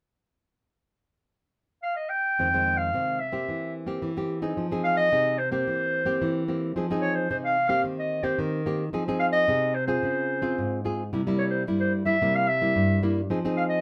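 A mellow clarinet opens this lively, bittersweet samba excerpt at 1.8 seconds, carrying the solo melody in a classical style with a distant, roomy tone even as it sits up front. At 2.4 seconds a fingerpicked nylon-string guitar joins as accompaniment, its acoustic, classical sound placed up front beside the clarinet. The guitar spans from deep bass notes up to just below the clarinet's lowest notes, while the melody keeps to a fairly narrow middle-high range. The harmony moves mainly between Fm7 and C7/E, later touching Cm7/Eb, a Dbmaj7 and C7 before settling back on Fm7. A wet studio ambience with a short reverb wraps both instruments, and the two play together until the excerpt ends at 13.8 seconds.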